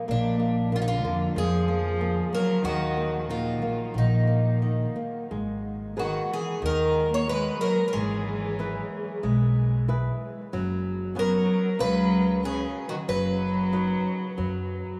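Rubato at 92 BPM in 4/4, this mournful, passionate fado-style ballad, cut from a longer piece, moves from Eb harmonic minor to G# minor at 5.3 seconds. A shimmering, octave-doubled picked twelve-string acoustic guitar carries the melody up front, and a fingerpicked flamenco guitar with fresh strings accompanies it. A bowed cello with a reedy gut-string tone adds a second line, and a woody, thumpy pizzicato upright bass anchors the low end. The whole performance sits in a huge, wet reverb that evokes a vast, echoing space.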